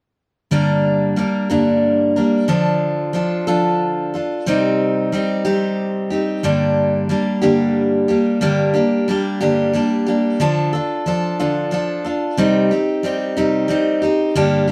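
Rock in G minor at 61 BPM in a straight 6/8, this reflective, dusty excerpt features a solo picked steel-string jumbo acoustic guitar, bright, full-bodied and up front, playing from 0.5 to 14.7 seconds over a Gm, Dm, Cm progression in a moderate studio reverb with the ambience of a live room.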